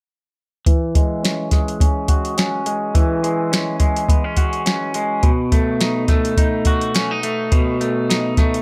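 Over a soft vintage rhythm box at 105 BPM in 4/4 with a light 16th-note swing, its deep kick, crisp snare and metallic hats overdriven and up front, a twangy, slightly broken-up electric guitar with subtle chorus, warbly pitch drift and a low-pass filter sweep plays nostalgic, laid-back indie bedroom-pop accompaniment in E major, moving from E69 to B7 at 5.2 seconds in this short excerpt bathed in light reverb.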